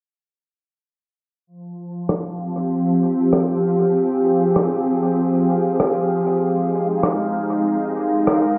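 A softly swung 97 BPM groove in 4/4 sets this meditative, hazy ambient dub fragment in F minor, carried by a compressed, pitched-down electronic rim click that enters at 2.1 seconds, muffled as if re-recorded in a large room and trailed by dub echo. Up front, a bright, organ-like pad holds sustained chords from Fm to Abmaj7 at 6.4 seconds, its detuned unison thickened by ensemble chorus, while a reversed, granular swelling texture drifts in high behind it with a dreamy glow. A filter sweep runs through the cut, and the whole mix sits in a wet echo-chamber reverb under a low-pass filter.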